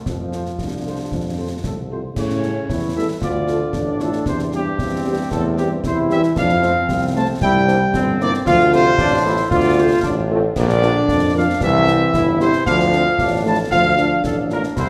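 Proud and festive, this military-style march for wind band in 2/4, cut from a longer piece, puts a dark trumpet section up front on the melody over warm sustained trombone chords, a clear tuba bass line and a very quiet, mellow French horn accompaniment. A soft-attacked euphonium, close-miked yet sitting in the background, carries a second line, while the concert snare, bass drum and clash cymbals sound close and dry, with dusky cymbal tone. The trumpets, horns, euphonium and trombones share a light vibrato and classical polish inside a wet concert hall reverb, as the harmony moves through F, Dm, Bb and C.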